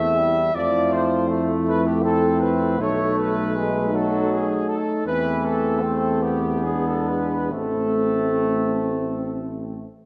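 Classical brass-band hymn in a rubato triple metre, elegiac and solemn, where an up-front, tight, dark trumpet section carries the melody over a distant, mellow French horn section with light vibrato on the second line, a roomy solo trombone with a brilliant edge and a soft-attacked, clear trombone section in the background for accompaniment, and a smooth-topped solo tuba holding the bass, all within a moderate concert-hall reverb in this brief passage cut from a longer piece.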